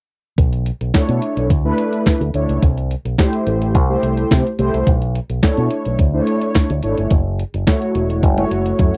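A home cassette recording with light reverb, this excerpt of early-eighties boogie funk moves at 107 BPM in B minor with a late-night, funky mood. A crisp 8-bit digital drum machine with a thumpy kick, fat snare, hi-hat, handclaps and toms has a tape-warm, small-room character and closes on a drum fill from 8.2 s. Up front, a bright fingered electric bass through an envelope filter starts at 0.4 s, and mellow, detuned sawtooth synth brass with chorus and vibrato enters at 0.9 s, sustaining over the chords Bm11, C6 and F#m7.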